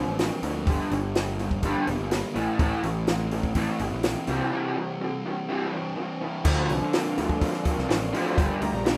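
A raw, lo-fi garage guitar riff and a sludgy distorted guitar open this moody, bittersweet indie rock excerpt in D minor at 124 BPM alongside a punchy fuzz bass, joined from 0.2 seconds by a dry compact cocktail kit with dark cymbals and a high-tuned snare, while a break arrives at 4.5 seconds and a brassy, detuned sawtooth pad with chorus and vibrato enters in the background at 6.4 seconds over a rough home-demo mix with light reverb.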